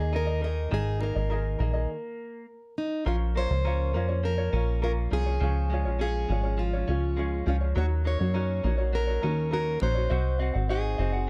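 Tender and reflective, this acoustic pop passage is cut from a longer piece and moves in a straight, even 4/4. A fingerpicked steel-string acoustic guitar with a full-bodied jumbo tone carries the melody up front, joined by a mellow, light, thumb-plucked tenor ukulele and a clean, compressed electric guitar recorded direct, which plays arpeggios. The loudest part is a plucky analog bass, punchy and funky, built from sawtooth and pulse waves with a filter pluck, a moving notch, a fast attack and decaying notes. The music opens on Absus2, pauses for a brief stop between 1.9 and 3.1 seconds, then settles into a new section that begins on Bb minor and passes through Db, Ebm7 and Cdim. A small room adds moderate reverb, and the production is dark and warm overall.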